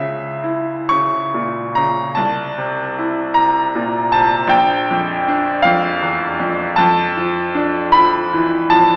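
A lone grand piano carries this excerpt of a romantic nocturne, its bright, brilliant tone carrying a smooth, vintage character and long sustain. The mood is yearning and melancholic, with a slow, rubato pulse in 6/8 that hovers around 41-55 BPM counted in dotted quarters, tuned slightly sharp to A4 = 441 Hz. The piano ranges from Bb1 up to C#6, moving through C#m6, then Am/C at 2.2 seconds, Bb, and finally Dm/F at 6.8 seconds. Though the piano sits up front, the whole recording sounds as if heard from further back in a room, with a wet reverb like a scoring stage and an AM-radio coloring. The nine-second passage is cut from a longer piece.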